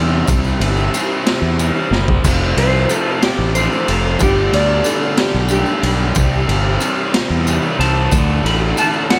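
Psychedelic rock in 6/8, trippy and kaleidoscopic, cut from a longer piece. A growly, overdriven fingered bass and a raw small-room drum kit with a high-tuned snare and boomy kick sit up front, while a bright, double-tracked fuzz guitar riff with phaser, a jingly tambourine and a very quiet vintage string machine holding lush sustained chords fill the background. A dark, clean lap steel slide melody with subtle chorus and tape echo enters at 2.6 seconds, just after a drum fill, and the whole dreamy mix is soaked in hall reverb over a C, F, Gadd9, C, Dadd9 progression.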